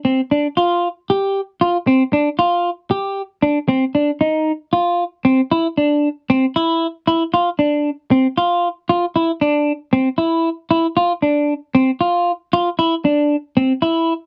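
A clean, picked electric guitar plays alone for the whole of this short cut from a longer progressive instrumental piece, from 0.0 to 14.1 seconds. Its compressed, up-front tone carries a subtle chorus and stays between C4 and G4, moving in an intricate, driving 7/8 at 231 BPM counted in eighths with a straight feel and shifting to a new section at 5.5 seconds. The dry, close sound recalls a 1970s studio, with moderate booth ambience around the guitar.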